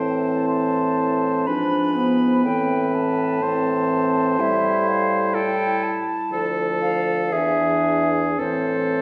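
A reverberant recital-hall sound with a 1.6-second decay frames this solemn, yearning slow romantic movement for wind quintet in A minor, taken in a rubato 3/4 at 54-63 BPM, where an airy, distant silver concert flute with a crisp attack carries the melody over a clear, up-front oboe second line, a close-miked clarinet and a roomy French horn in the accompaniment, and a vintage-toned bassoon with light vibrato and a soft attack on the bass, as the harmony moves through Am, G#dim7, Dm and E7 before settling back on Am.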